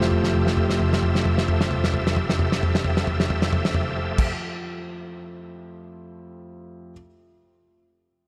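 A dreamy mix soaked in a lush hall reverb opens this short fragment of slow, uplifting gospel in F major, moving at 44 BPM in a straight 6/8. A bright, shouting tonewheel organ holds full sustained chords through a slow rotary speaker with light overdrive, chorus vibrato and audible key click, resting on an Fmaj9 chord until 4.3 seconds. Beneath it, a fingered electric bass sits in the background with a round, punchy, amped tone on a low F. The drum kit is up front, dry and dark with a tight kick, medium-tuned snare, toms and a dark crash, playing a fill that runs to 4.2 seconds before the kit stops at 5.9 seconds. A grand piano with long sustain provides accompaniment throughout and is the last part heard, ending at 6.9 seconds, giving the moment a hopeful glow.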